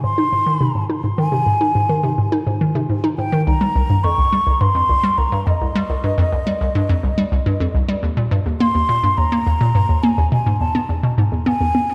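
Cosmic and expansive, this short excerpt of ambient, sequencer-driven space music moves at 105 BPM in a straight 4/4 through Ab, Cm, Eb and E. A bouncy, nasal square-wave pluck sits up front with a fast attack, short decay and a moving notch, playing a riff from C2 to Eb4 through chorus and delay until 11.8 seconds. Above it, an airy, mellow concert flute with vibrato and a soft attack carries the melody from Eb5 to Db6 with delay for the full 11.9 seconds, both parts sitting inside a dark hall reverb.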